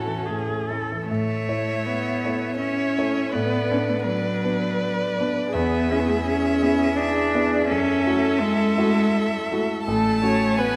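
A clear, focused cello sits up front and carries the second line from F#3 to A4 with vibrato. This slow, romantic movement for piano quartet is in A major at 82 BPM in a rubato 3/4, and its mood is melancholic and yearning. Above it, a single violin sings the melody between A4 and A5, its tone warm, with a soft attack, vibrato and expressive portamento. A close, bowed viola supplies accompaniment, and the concert grand piano sits up front with a smooth, vintage sound and deep bass reaching down to A1. The harmony moves from A through Bm/A and E to F#m7 at 7.7 seconds and F#m/A at 9.9 seconds. All four players sound throughout this brief cut from a longer piece, in the generous, wet reverb of a scoring stage.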